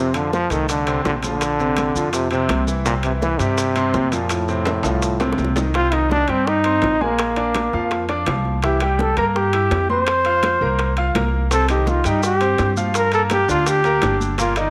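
Set in a moderate echo-chamber studio ambience, this festive, sunny salsa excerpt puts a punchy, bright trombone solo with vibrato up front over a brilliant grand piano with audible action noise and a woody, growly pizzicato upright bass, while ringing timbales and high-tuned congas sit in the background with tight, very quiet bongos and grainy maracas that drop out at 5.7 seconds and return at 11.5 seconds, and a drum fill leads into the second section.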